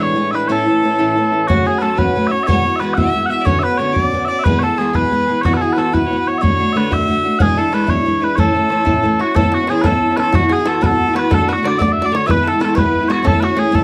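A jig in 6/8 drives this bright, rollicking Celtic folk excerpt, cut from a longer piece. Small bagpipes carry the melody up front with a mellow, sweet, continuous tone and vibrato. Equally prominent, a picked, ladder-braced acoustic guitar with old strings supplies woody, boxy accompaniment. A distant fiddle, nasal and earthy and bowed by one player, plays a second line, while a reedy, breathing hand-pumped harmonium drone sits in the background for the opening 1.5 seconds before a boomy, open bodhran enters from afar in a large room. Near 9.2 seconds a twangy, percussive bluegrass banjo, played with fingerpicks, adds another second line in the background as the tune moves into its second part, with the whole captured through close, detailed microphones and light reverb.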